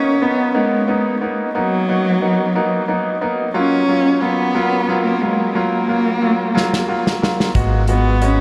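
Six-eight pop ballad in F# major at a slow 60 BPM, heartfelt and romantic, where a single bowed cello sings the melody with vibrato, portamento and a soft attack through a diffuse ambient delay over a bright, polished grand piano moving from Bmaj7 to F#maj7, before a loose, small-room indie drum kit with a tight kick and a rolled-off top enters with a fill at 6.6 seconds and a woody, thumpy pizzicato upright bass lands on G#m7 at 7.6 seconds, all afloat in a dreamy mix soaked in huge reverb.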